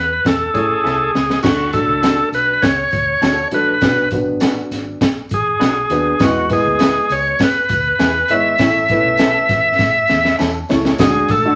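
Warm and danceable, this uptempo 1960s-style soul excerpt puts a reedy, bright tonewheel organ up front on the melody, over a foam-muted, round electric bass and a crunchy, saturated breakbeat kit with a punchy kick, high-tuned snare and dark cymbals, which rolls through fills at 0.8 and 9.8 seconds. A woody, mellow upright piano fills in the accompaniment while a slightly broken-up, lo-fi electric guitar adds stabs and a jingly tambourine sits in the background, moving through A, D, B minor and E. A soft-mallet vibraphone with slow motor vibrato appears only at 11.0 seconds, and vinyl crackle and a wet studio reverb colour the whole track.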